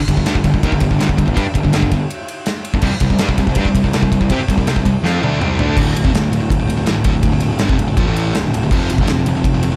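A punchy, up-front acoustic rock kit with a medium-tuned snare drives this dark, epic heavy metal excerpt at 163 BPM in D minor, with a sludgy, overdriven guitar riffing up front until 5.8 seconds, a second sludgy guitar further back, and a growly, bright fuzz bass underneath, while a drum fill at 5.0 seconds leads into a new section on Dm inside a small, shadowy room.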